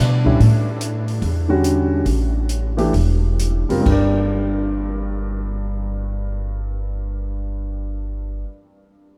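A swung 4/4 pulse between 126 and 148 BPM slows from 0.4 to 3.9 seconds in this short, hypnotic and spiritual modal jazz excerpt in G dorian, moving from an A7sus4 chord to G minor at 3.9 seconds. Up-front pizzicato upright bass with a woody tone anchors the low end under a polished upright piano whose long sustain carries through, while an open drum kit adds dark crash and hi-hat cymbals and a boomy kick before dropping out at 4.0 seconds. A huge, moderate reverb places the sound in a vast, echoing space.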